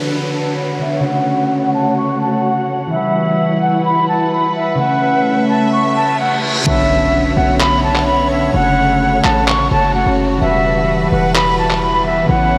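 This menacing, hard-hitting trap and hip hop excerpt opens with an airy, reedy concert flute carrying the melody up front with vibrato and delay, over ringing fingerpicked harp and a lush, woody bowed string section, all three low-pass filtered, while electronic sound effects and a filter sweep lead up to a reverse cymbal at 6.0 seconds. At 6.7 seconds an impact lands and a punchy, heavy 808-style bass drops in, joined at 7.6 seconds by compressed, pitched-down, muffled handclaps sitting in the background. The half-time groove floats in a dreamy mix soaked in huge ambient reverb.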